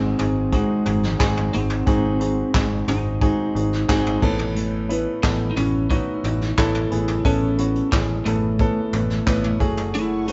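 An up-front baby grand piano drives this earnest, dramatic pop excerpt, carrying the chords from G#7 to Aadd9 and on to F#madd9 while a slightly broken-up, compressed lead guitar picks out the melody. Beneath them sit a dark, full-bodied fingerpicked acoustic guitar riff in the background, a round, punchy foam-muted electric bass, and a vintage brush kit entering at 0.2 seconds with dark cymbals, a tight kick, toms and handclaps. Bowed, soft-attack studio strings slip in at 9.9 seconds, and the band sounds as though it is playing live in a stone room with a moderate reverb and a rolled-off top.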